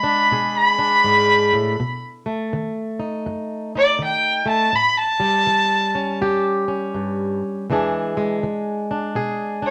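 Swung eighth notes in 4/4 give this short cut from a longer acoustic country blues duo a rollicking, swaggering gait. A rich, smooth fiddle with light vibrato carries the melody as a solo throughout, riding up front over a boxy, fingerpicked, plugged-in swing-style acoustic guitar that moves through E7, B7 and A7 before returning to E7. A modest small-room reverb gives the pair an intimate setting.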